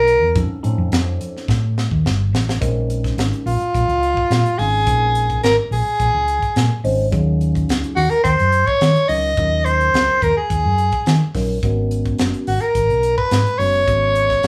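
Driving and funky, this cut from a longer electric jazz fusion piece moves at 107 BPM in a straight 4/4, centered on B-flat minor and tuned to A4 = 443 Hz. A growling soprano saxophone carries the melody up front from the first second, its raspy, gritty tone softened by a smooth top and a light vibrato, and its solo opening runs to 2.6 seconds while the drums play a fill from 1.5 seconds. The crisp fusion drum kit, entering at 0.1 seconds, sounds airy and polished, with a high-tuned snare, tight kick and hi-hat. A hollow-body short-scale electric bass, played fingered, gives a dark, round, amped low end from the start. A tine electric piano joins at 0.4 seconds on an F7b13, its clean tone coming through built-in speakers and colored by a phaser, before the harmony settles into Bbm11, Ebm11 and Abm11 chords. The band plays live in one room with moderate studio ambience.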